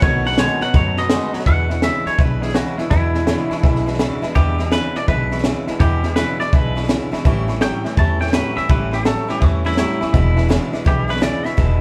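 A compressed, clean, twangy electric guitar carries the melody in this rollicking, upbeat rockabilly excerpt at 166 BPM with a swung feel in E mixolydian, opening with a short solo as the band works through B7, E7 and A7 changes. Beneath it, a second, brighter twangy guitar plays a low riff in the background, bathed in spring reverb, while a full-bodied picked dreadnought acoustic guitar fills out the middle. A jangly, detuned vintage honky-tonk upright piano sits further back and adds a fill at 3.6 seconds. A woody, growly pizzicato upright bass anchors the low end, and a compact cocktail drum kit with a high-tuned snare and punchy kick sits up front, dropping a fill at 7.1 seconds, with the band playing live together in one room with light reverb.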